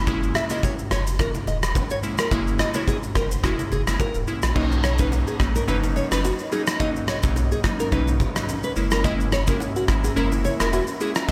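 Sunny and joyful, this afrobeats excerpt at 107 BPM in B major sets a deep, mellow sub bass with octave and chorused glassy digital keys under a gritty, boomy oversized low-tuned drum kit with crash, kick, rim click and shaker, very quiet distant congas and bongos, and a bright fingerpicked nylon-string guitar riff with delay and finger squeak, while an ethereal airy pad with ensemble chorus enters in the background at 5.2 seconds.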